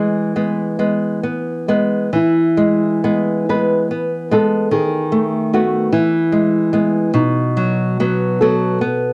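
A rubato 6/8 pulse of dotted quarters, drifting between 43 and 51 BPM, carries this lyrical, tender romantic duo for two nylon-string guitars in E major, a brief fragment cut from a longer piece. One guitar sings the melody, warm and thumb-plucked, while the other gives a fingerpicked accompaniment in a lower register, up front with audible finger squeak, the harmony moving from E through B7/D# and back to E before settling on B. Both parts carry the color of a home cassette recording, with light reverb suggesting a small, intimate room.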